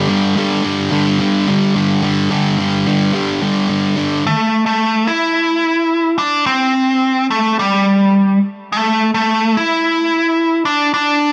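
Angsty rock at 108 BPM in 4/4, this fragment opens with a thick, bright, double-tracked fuzz guitar riff on a G5 chord up front until 4.2 seconds, after which a nasal, overdriven lead guitar with a parked wah carries a brooding, dark-toned melody alone from 4.3 seconds to the cut at 11.3 seconds, both parts set in a moderate studio reverb.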